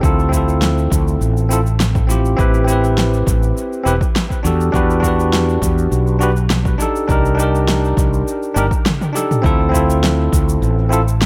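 This sunset chillout piece has a smooth, warm mood and a straight, steady groove in four. A bell-like tine electric piano sits up front with a bright, clean tone, filtered and trailed by dub echo as it carries the harmony through Dm9, Am9, Em9 and Cm9 before returning to Dm9. Beneath it, a mellow fretless electric bass gives a dark, round low end, direct and forward with a touch of tube saturation. The deep house drum kit adds shaker, a fat snare and toms through analog delay, while a punchy, layered electronic kick drives the pulse until it drops out at 10.4 seconds. A drum fill from 8.6 seconds leads into a new section at 9.4 seconds, and the whole mix is soaked in echo and bathed in moderate spring reverb and digital ambience.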